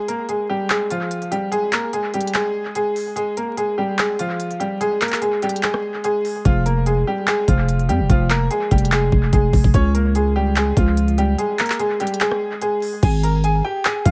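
This wistful, dreamy trap excerpt opens on a bright concert grand piano carrying the melody, its brilliant, present tone ringing with short sustain and deep low end, touched by analog delay. A trap drum kit arrives almost at once, electronic and tape-tinged, with a knocking kick, crisp hi-hats, handclaps, rim clicks and crash cymbal, also fed through analog delay and placed up front. The tempo sits at 146 BPM in 4/4 with a half-time feel, and the harmony rests on Fmadd9 before moving to Db at 9.7 seconds. A growling 808-style bass enters at 6.5 seconds, buzzy yet sine-rooted with a fast attack and decaying notes, sitting slightly louder than the other parts. The mix is dry of reverb but echo-heavy, with vinyl crackle beneath, and the clip closes on a rootless Fmadd9/Ab chord from 13.0 seconds as it cuts off mid-piece.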